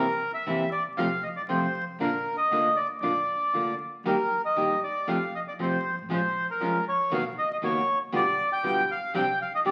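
Crackling like a very old 78 rpm record and bathed in a wet large-studio reverb, this dramatic, tense tango excerpt unfolds with a rubato feel as a reedy bandoneon carries the melody up front over a full-bodied, fingerpicked nylon-string guitar, while a woody, thumpy pizzicato upright bass on gut strings sits darkly in the background beneath a restless chord progression that comes to rest on a suspended chord.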